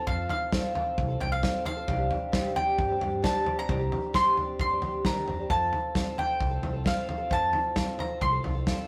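Uplifting and warm, this short indie folk passage cut from a longer piece sets a round, up-front picked mandolin melody over a dark, boxy twelve-string acoustic guitar whose octave-doubled strings shimmer with audible finger squeak, while a woody pizzicato upright bass and a loose, up-front drum kit with a tight kick and a medium-tuned snare fill out a rough rehearsal-room sound in moderate reverb.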